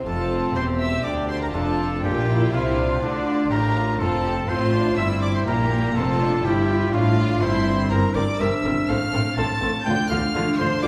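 Lively and brilliant, this baroque-style concerto passage pairs a vintage-toned solo trumpet with a high violin section on the melody, while a second, intimate sul tasto violin section carries an inner line, a viola section sits in the background, a very quiet and delicate fingerpicked lute accompanies, and distant cello and double bass sections hold down the bass, all heard from further back in a reverberant recital hall.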